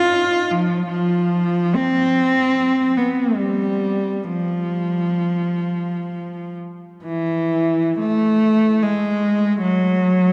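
A clear, bowed solo cello sings alone in free time, smooth and even with vibrato, ranging from E3 to F4 up front in a wet cathedral reverb with a dark, warm production, a lonely, yearning classical fragment that moves into a new section at 7.1 seconds before the cut at 10.3 seconds.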